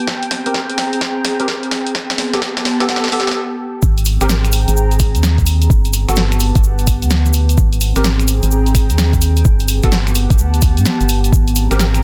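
The organ-like FM bass sits up front, hollow and dark, entering at the drop at 3.8 seconds to carry the low end under a sunny, bouncy two-step garage groove with a swung 4/4 feel. Before that, a short build-up opens with a drum fill from the electronic kick, a knocking, overdriven, layered hit, and a punchy analog drum machine re-recorded in a small room that supplies finger snaps, hi-hat and a snare, while a filter sweep runs over the percussive organ stab and a brief break lands just before the drop. That stab, hollow and organ-like with a fast attack, ensemble chorus and dub echo, keeps punctuating the track throughout, over chords that alternate between Abmaj9 and G-based ninth chords. A warbling, nostalgic tape-like pad with built-in reverb hangs mellow and lo-fi behind everything, while a smooth analog pad with vintage sampler grit sits in the background only through the opening. 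Once the drop arrives, a grainy, close cabasa joins in the background, and the whole clip, cut from a longer piece, comes across dense and heavily limited with light digital ambience.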